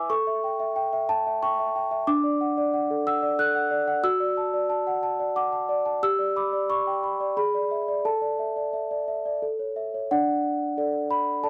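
A dry, close studio sound in a 1970s style frames this short classical lullaby, with only a light touch of reverb. A solo celesta sits up front for the whole clip, its soft felt hammers giving a bell-like, delicate tone that stays mellow and sweet. The mood is dreamy and innocent, moving in a gentle 3/4 with a straight feel as the instrument ranges from D4 up to F#6. The harmony opens on A7 and settles onto D, then passes through D/F#, G, E7/G# and a suspended Asus4 before resolving through A. At 10.1 seconds a new section begins back on D, and the clip, cut from a longer piece, ends at 11.5 seconds.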